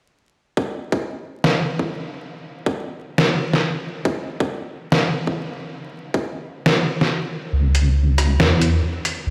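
A tight, layered electronic kick opens this dark, brooding deep dubstep excerpt at 0.6 s, tape-warm and high-pass filtered, re-recorded in a large room and sitting up front, while a compressed, pitched-down trip hop sampler-style kit joins at 1.4 s with a muffled hi-hat, rim click and medium-tuned snare. The groove moves at 138 BPM in a swung, half-time 4/4 in C# minor. At 7.5 s a build-up brings in a deep, detuned wobble bass blending sawtooth and sine tones with chorus, its fast attack and sustained, compressed body filling the low end, all bathed in a huge stone-room reverb with vinyl crackle, as if played on a big sound system in a bare room.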